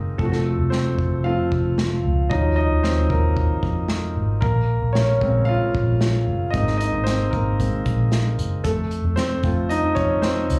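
Piano-driven pop at 114 BPM in 4/4, dramatic and earnest, this clip from a longer live club performance heard through the venue's PA puts a clear, intimate concert grand up front, with audible action noise, deep bass, long sustain and a slapback echo, featured across the full 10.6 seconds over F, Ebm7, Bbm7 and Abadd9, while a dark, round, foam-muted fingered electric bass holds the low end and an acoustic drum kit played with bundle sticks, with a punchy kick, medium-tuned snare and hi-hat, enters at 0.2 seconds under light club reverb.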